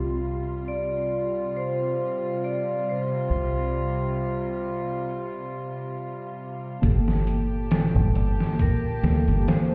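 A deep, round fingered electric bass sits up front in this brooding, smoky trip hop excerpt, its dark, foam-muted tone anchoring the low end in G minor at a slow 68 BPM with a light 16th-note swing. A mellow tine electric piano with tremolo plays accompaniment while a chamber string section of bowed, gut-string tone with light vibrato holds sustained chords underneath, moving from Csus4 to Gmadd9. From 0.7 seconds a vibraphone played with medium hard mallets carries the melody, its metallic, ringing voice touched with tape echo. At 6.8 seconds a compressed, pitched-down sampler-style drum kit arrives up front with a thumpy kick, medium-tuned snare and hi-hat, gritty with overdrive and studio reverb. The whole mix sounds muffled, as if heard through a wall, with a stone room reverb and a low-pass filter softening its edges. The excerpt is cut from a longer piece.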